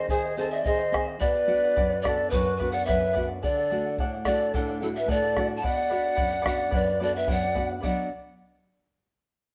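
A breathy, bright pan flute opens this melancholic Andean folk piece at once, carrying the melody with vibrato, tongued chiff and reedy, lifted highs, set up front over a full ensemble that enters together. Beneath it a large quena plays a second line in an airy, straight, end-blown tone with a soft attack, sounding more distant in the mix. The charango's fingerpicked double strings add a shimmering layer, some of them octave-doubled, while a nylon-string guitar, fingerpicked and full-bodied with a deep classical warmth and the odd finger squeak, fills out the low end. A deep, dark bombo joins at 0.1 seconds, close and dry. The wistful tune moves at 109 BPM in a straight 2/4 in B dorian, passing through G#, Bm, D and back to Bm, while the band, playing live together, sits in a moderate stone room that gives the sound a natural ambience before this fragment of a longer piece breaks off.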